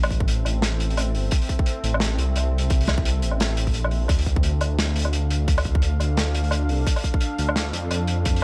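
Dry, heavy and spacious, this half-time drum and bass excerpt at 173 BPM in A minor moves from Am to Dm over a tight, up-front electronic kick, a crunchy, saturated breakbeat kit of hi-hat, medium-tuned snare and woodblock with a rolled-off top, a deep, rumbling detuned saw bass with a beating unison edge, and a moody, slow-attack ambient pad whose chorus, built-in reverb, 12-bit sampler grit and sidechain pumping colour its sustained chords from 0.1 seconds.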